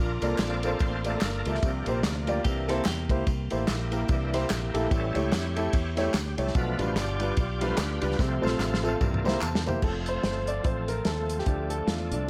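A bright tonewheel organ leads this uplifting, soulful slice of uptempo gospel, its lightly overdriven tone turning through a slow rotary speaker with chorus vibrato and key click as it carries the melody over a clear, woody upright piano and a round, up-front fingered electric bass. A dry soul drum kit with dark cymbals, a tight kick and a medium-tuned snare sets a swung groove, while tambourine, egg shaker and group handclaps sit in the background. A compressed, picked clean electric guitar adds a brief second line at 2.4 seconds. The drums play a fill from 8.2 seconds, with the piano adding its own fill just before taking over the lead at 9.8 seconds. At that point a very quiet, muted French horn section enters with nasal, metallic sustained chords, all set in light reverb in a clip cut from a longer piece.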